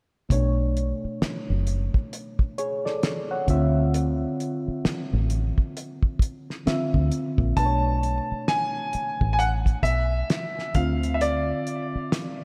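A bright, brilliant grand piano carries the melody with delay from 7.6 seconds, floating over a slow 66 BPM neo-soul R&B groove in B dorian with a swung sixteenth feel. A reedy electric piano with analog chorus plays Bm9 and Dm9 chords, while a round, foam-muted fingered electric bass sits deep and punchy beneath a cloth-damped, thuddy drum kit of tight kick, fat snare and hi-hat with a rolled-off top. The whole introspective, smooth excerpt is soaked in a lingering church reverb that gives it a dreamy haze.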